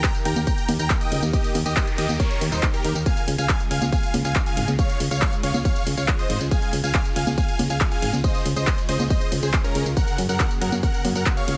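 Opening at once on a huge, detuned supersaw lead, a punchy layered kick and an overdriven analog drum machine of congas, handclaps, hi-hat, ride cymbal and tambourine, this soaring, bittersweet uplifting trance excerpt drives along at 139 BPM in a straight 4/4, with the bright, euphoric lead pumping to the sidechain and trailing a digital delay. A round FM bass with a fast, decaying attack joins at 0.3 seconds, also pumping and sitting up front beside the kick, while a background noise sweep passes through between 1.6 and 3.1 seconds. The harmony moves from Eb to Db and settles on Gbadd9 at 10.0 seconds, all in a dry, close-sounding mix.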